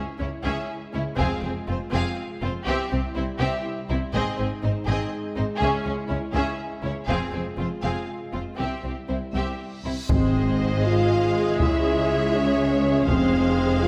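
Set in a moderate scoring-stage reverb, this adventurous, triumphant cinematic orchestral excerpt moves at 81 BPM in 6/8. Lush bowed violins carry a distant, vibrato-rich melody over a focused second violin line, intense violas, mellow French horn chords, soft-attack cellos and smooth-topped double basses. Meanwhile a compressed, saturated taiko ensemble with hard sticks drives the build-up from 1.2 seconds. At 9.7 seconds a huge, dark reverse cymbal swells into an impact at 10.1 seconds, joined by a very quiet dark tuba and a brief, close timpani hit.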